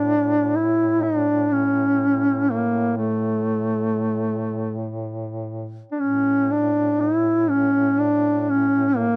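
A dry, close 1970s-style studio sound frames this mournful, longing Caucasian folk lament, cut from a longer piece and moving in an uneven, rubato three-beat metre. Up front, a mellow duduk carries the melody between A3 and E4 with vibrato, a soft attack and scooped notes, while a second duduk holds a quieter drone on A2, its smooth top also shaded with vibrato and scooped notes. Both play from 0.0 to 9.2 s in folk style, with a new section beginning at 6.0 s.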